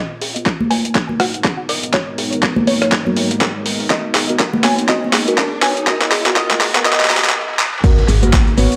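A swung 122 BPM deep house groove in G# minor, cut from a longer piece, builds hypnotically on a gritty, overdriven sampler-style kit with handclaps, shaker and rim clicks, a punchy electronic kick, thick-skinned congas, a glassy wavetable pluck melody, a very quiet soft round pluck arpeggio, detuned chord stabs and a pumping dark pad under filter sweeps and a very quiet riser, until a stop at 7.3 seconds gives way at 7.8 seconds to an impact and a faint big rock kit, joined at 8.1 seconds by a woody FM bass note, all in an echo-heavy plate-reverb mix.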